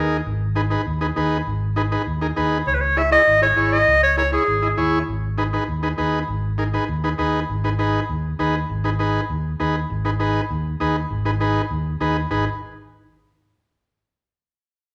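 A driving, danceable Latin groove in straight 4/4 at 199 BPM runs through this short excerpt in G# minor, with a dark, round fingered electric bass holding the low end and a vintage, buzzy combo organ comping from the start through 12.4 seconds over chords moving from G#m to C#m and back. A clear clarinet with jazz-style vibrato takes the solo melody, sounding briefly at the top and then returning from 2.7 to 4.9 seconds. The band plays live in one room, bathed in a large studio reverb with a wet tail.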